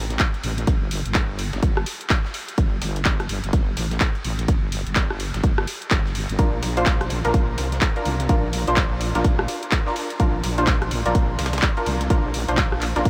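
A gritty, aggressive bass house excerpt opens on a heavy, detuned wobble bass pumping under a punchy, up-front electronic kick, layered house handclaps, hi-hat and rim click, and a very quiet sampler-style breakbeat of hi-hat and snare, before a bold, nasal orchestra-hit-like synth stab with tape echo arrives at 6.4 seconds as the harmony moves from Gsus2 to Bb, all washed in a dreamy, reverb-soaked ambience.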